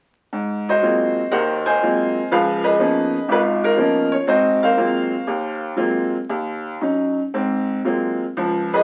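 A bright upright piano opens at 0.3 seconds, playing solo jazz in a playful, swinging mood. The tempo sits around 114-124 BPM in 4/4 with a 69% swing on the eighth notes, loosened by rubato, and the harmony centers on Ab mixolydian, moving through Ab13, Db13 and Ebm7 before settling back on Ab13. The piano covers a broad span from Ab1 up to Ab5, and its tone is brilliant and woody, with an open, up-front presence. The recording carries the character of a very old 78 rpm record, with vinyl crackle and a moderate studio ambience around the instrument. This short passage is cut from a longer piece, and the piano plays through to 8.8 seconds.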